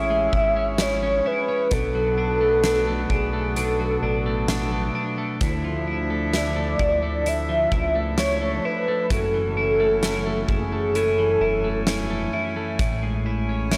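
Floating and blissful, this dry, gritty dream pop excerpt lays a velvety, detuned synth lead with chorus, delay and vibrato over reedy harmonium chords, bright, twangy arpeggios from a twelve-string electric guitar with subtle chorus and delay, a glossy chorused synth bass, and a huge arena drum kit with a fat snare and punchy kick that enters at 0.3 s, moving through Amaj7, Bm7, Dmadd9 and F#m7 before returning to Amaj7.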